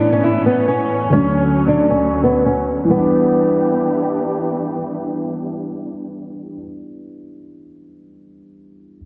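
A half-time 4/4 groove at 135 BPM anchors this eerie, hard-hitting hip hop excerpt in E dorian, where an up-front, woody, boxy fingerpicked acoustic guitar with old strings carries the melody through low-pass filtering and tape echo until 4.2 seconds, a dark, mellow concert grand piano with deep bass accompanies until 9.0 seconds, and a veiled, distant, muted string section sustains lush con sordino chords with vibrato until 6.6 seconds, all moving from Aadd9 and Dmaj7 to Em7 at 2.9 seconds as an opening filter sweep ends, under light studio reverb and a dense, heavily limited modern master.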